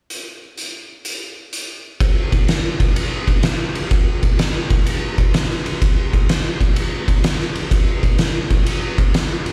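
Rock excerpt at 126 BPM in 4/4 with a swung eighth-note feel, its raunchy, gritty mood carried by an oversized low-tuned acoustic drum kit playing hi-hat, kick, snare and ride from 0.1 to 9.5 seconds, up front and saturated with a boomy kick, fat snare and dark cymbals in a bright, pumping stone room, heard as a live gig through the venue's PA with recital hall reverb, and moving from an opening passage into a new section at 2.0 seconds.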